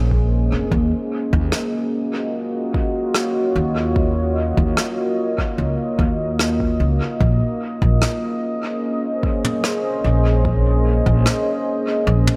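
A deep, moody pad of detuned sawtooth, sine and triangle tones opens this hazy ambient dub excerpt, its slow attack, long release, chorus and built-in reverb sitting up front alongside a woody, thumpy pizzicato upright bass with gut strings and a touch of tube saturation. A soft, overdriven electronic kick with a small-room character enters at 0.1 seconds, giving the straight 4/4 pulse a produced weight beneath the dark harmony. At 1.5 seconds a jazz brush kit arrives, its rim clicks and toms recorded in a studio room and trailed by dub echo. The harmony drifts from Bbm11 to Ebm9 and returns to Bbm11 at 7.2 seconds, with the pad's sub octave deepening the murky atmosphere. Light reverb and studio ambience frame an echo-heavy mix that feels nocturnal and submerged, cut from a longer piece.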